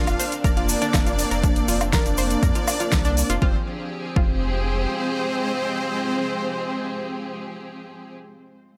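A dark, cinematic slice of melodic techno in F dorian, this excerpt runs at 121 BPM in a straight 4/4 and opens in the middle of a drop over a Bbadd9/F chord before settling onto Fm at 3.4 seconds. A deep house kit with a fat snare, metallic hats and woodblock, plus a grainy tube shaker in the background, enter first and are soon joined by a punchy, overdriven electronic kick up front; the kit and shaker fall away at 3.4 seconds while the kick carries on briefly. A round analog bass with a deep, sine-like tone pumps underneath until 4.9 seconds, and a bright analog pluck with chorus and delay spins arpeggios through the first half. The soft supersaw melody, smooth and detuned with delay, leads throughout alongside a fat, bold polysynth second line that pumps with the sidechain and carries chorus and delay. A lush, bowed string section holds sustained chords, while a cloudy granular pad with its own reverb drifts in the background, and the whole mix sits in a light digital ambience.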